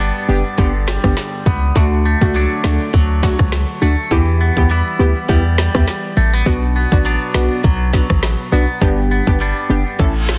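Dancehall with a sunny, summery mood, this short excerpt moves at 102 BPM in 4/4 with a light 16th-note swing. A hard-hitting 808-style bass sits up front from the start, its sine tone punchy and heavy with a noise layer, a fast attack and decaying notes, while a clean electric guitar plays bright, twangy picked arpeggios colored by subtle chorus and tape echo. A detuned sawtooth synth brass stab with a filter pluck and chorus joins at 0.3 seconds, and an electronic island pop drum kit enters at 0.6 seconds with a tight kick, woody snare, rim click and smooth hi-hats, tape-warm and up front. The harmony cycles through G, D, Em and Bm before returning to G. A brief electronic reverse cymbal rises in at 10.1 seconds near the cut. The mix is dry and dense, with a heavily limited modern master.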